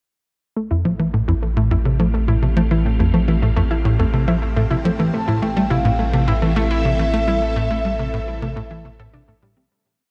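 A punchy sawtooth sequencer bass drives this hypnotic, mysterious piece of ambient space music, cycling a 16-step pattern over a deep sine sub bass while a detuned unison pluck loops a 7-step arpeggio with delay, a swirling vintage string machine fades in with phased chords moving from Fsus2/A to A minor, and from 5.1 s a mellow, warbling horn-like lead floats a free melody through chorus and vibrato, all bathed in a huge ambient reverb before the fade-out.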